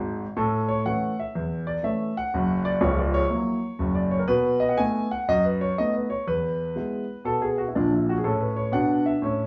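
A warm, present grand piano sits up front in this exuberant stride jazz passage, cut from a longer piece. It swings at 122 BPM in A major, opening with a brief fill before moving through A, F#7, B7 and E and landing back on A around 8.2 seconds. The piano ranges from deep bass to bright upper notes, and the small, reverberant room gives the feel of a live performance.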